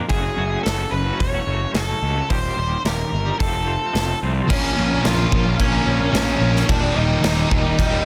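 A dark octave-fuzz lead guitar carries the melody up front through this cathartic, dark quiet-loud alternative rock excerpt at 109 BPM, riding a round, fuzzy picked bass and a punchy, up-front big rock kit over chords moving from F#m through Eb and F, with a twangy twelve-string electric guitar shimmering with tremolo in arpeggios until 4.5 seconds, when a sludgy overdriven guitar and a bright, thick fuzz guitar take up a background riff on Bbm and Eb beneath a very quiet, mellow vintage string machine viola pad, all in a dry, dense, heavily limited modern master.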